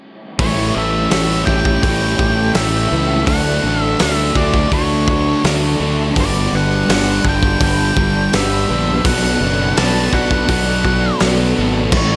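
A straight 4/4 pulse at 83 BPM drives this wistful, blissful slice of shoegaze and dream pop in A mixolydian, cut from a longer piece and moving through A7, Dmaj7, G and Bm7. A loose indie drum kit sits up front from 0.4 seconds, with a punchy kick, fat snare, dark cymbals and a gritty, saturated tone that rolls off at the top, while a round, overdriven fuzz bass plays low beneath it. Three rhythm guitars play riffs together: a bright, double-tracked biting overdriven guitar in the background, a crunchy overdriven one kept very quiet, and a thick, dark fuzz guitar, also very quiet. Over them, an octave-fuzz lead guitar carries the melody with a dark, distorted voice and digital delay, and a fingerpicked twelve-string acoustic guitar adds shimmering, boxy, octave-doubled arpeggios with a swing feel, subtle chorus and delay. From 1.0 seconds an icy, crystalline glass pad holds sustained chords in the background, airy and detuned with chorus and reverb, and light studio reverb surrounds the mix.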